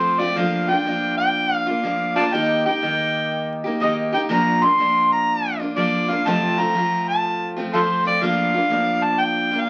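Set at 122 BPM in 4/4 with a swung eighth-note feel, this short country excerpt, cut from a longer piece, moves at an easy, loping pace with a nostalgic, down-home mood. An amplified, overdriven harmonica carries the melody up front from start to finish, its gritty tone marked by light vibrato, tongue slaps and scooped notes in a jazz-inflected solo style. Beneath it, a picked steel-string dreadnought acoustic guitar supplies bright, full-bodied accompaniment, its fresh strings ringing clearly throughout. The harmony moves from Bb over F to Eb, back to Bb, on to F, and settles again on Bb over F near 8.2 seconds. A wet club reverb gives the pair a close, lively room, while the crackle of a very old 78 rpm record lends the whole sound an aged, faded character.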